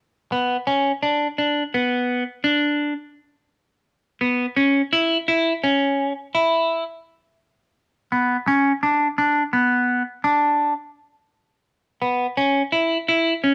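A clean, bright semi-hollow electric guitar sits up front in a moderate studio reverb, playing a brooding, tense progressive instrumental solo through a phaser in a straight 11/8 at 169 BPM, in a narrow register from B3 to E4, from 0.3 to 13.5 seconds of this short cut from a longer piece.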